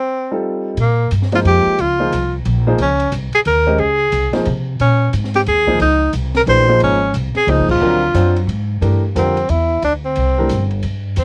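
Spiritual and searching, this excerpt of swinging modal jazz in Bb dorian moves at a brisk 179 BPM in 3/4: a close-miked tenor saxophone leads up front with a soft attack, vibrato and scooped notes, joined by a concert grand piano whose audible action noise and deep bass feel intimate, both tinted by cassette tape. A woody pizzicato upright bass and a small-room drum kit with dark cymbals, a high-tuned snare and a boomy kick enter at 0.8 seconds, and a band accent at 7.6 seconds marks the turn toward a closing D7alt-to-Gm11 passage, all in a dry home cassette recording.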